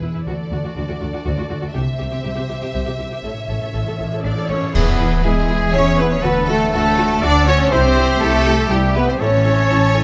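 A lush, vibrato-rich violin melody leads this triumphant, adventurous film-score passage in 3/4 at 121 BPM in E mixolydian, backed by a very quiet second violin line, distant violas, ringing fingerpicked harp arpeggios, and a deep bowed foundation of cellos and double basses; dark cymbals and concert bass drum rise in at 1.8 s, distant trumpet stabs and roomy French horn chords arrive near 4.2 s, and a pure flute and clear oboe add background lines from 4.7 s, all set in a concert-hall reverb.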